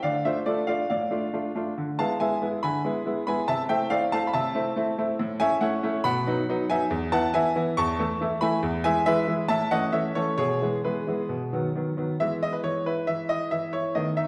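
A clear, slightly worn baby grand piano plays alone throughout this playful, cheerful classical-period sonatina, its natural tone and short sustain sitting up front. The piece moves at a brisk 139 BPM in a straight 4/4, tuned to A4 = 441 Hz, with the piano ranging from E2 up to C#6. It opens in A minor over chords such as Dm, E7/D and Am/C, then shifts to E major at 5.2 s, passing through F#m7/A, B and E and swinging between A and E harmonies. A new section begins at 12.2 s on an E chord, and the recording ends at 14.3 s as a fragment cut from a longer piece. The sound carries a wet recital hall reverb with a 1.4-second decay, heard from further back in the room.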